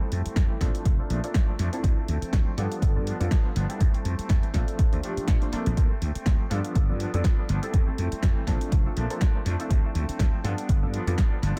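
A punchy, tape-warm electronic kick sits up front in this funky, groovy filtered disco house excerpt, entering at 0.4 seconds and driving a swung 4/4 groove. Beneath it, a growly, bright slap bass carries the low end with sidechain pumping and a low-pass filter, while a punchy analog drum machine adds snare and hi-hat, its hats pumping and touched by analog delay. A funky polysynth comp of sawtooth and pulse waves plays plucky, sustained, mellow chords through chorus, phaser, delay and a pumping filter, cycling through Fmaj7, Bbmaj7, Dm7 and G7. A clean, picked electric guitar riff shimmers with tremolo and delay further back in the mix, and a tambourine is barely audible underneath. A filter sweep runs across the whole 11.6 seconds, and digital ambience gives the mix an echo-heavy character.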